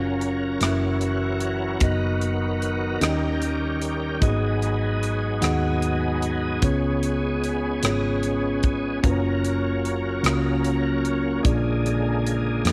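A mellow, up-front tine electric piano carries the accompaniment in this soulful, uplifting slow gospel passage in 6/8, joined by a bright, shouting tonewheel organ with key click, slow rotary speaker, light overdrive and chorus vibrato, a dark, round hollow-body electric bass, and a dry, airy, polished funk drum kit of hi-hat, tight kick and rim click that enters at 0.2 s, set in an echo chamber reverb as the chords move from F#maj7 through G#m7 and C#7 to A#7.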